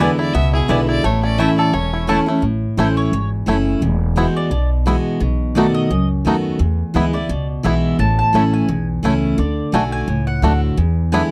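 Lively and driving, this swung 172 BPM bluegrass excerpt in A major opens with a biting, clear bowed fiddle melody that stops at 2.1 seconds, after which the double-strung, woody mandolin takes a solo from 2.4 seconds over bright, full-bodied picked dreadnought guitar accompaniment, twangy fingerpicked banjo arpeggios and a thumpy, dark pizzicato upright bass on gut strings, heard in a dry, close 1970s-style studio sound with light reverb.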